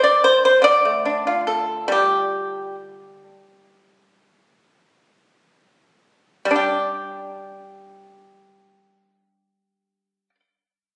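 A solo pipa, plucked with fingerpicks, carries this serene, pastoral fragment of Chinese traditional music, sitting up front with a dry, percussive bite. The tempo drifts freely between 48 and 77 BPM in a rubato 4/4, with the music set in the G shang mode and the pipa ranging from D3 to D5. Through the opening passage the playing slows down until 6.6 s, where a second passage begins. The pipa is heard alone until it falls silent at 10.4 s. The recording, made on a phone in the room, places the instrument within a moderate concert hall reverb.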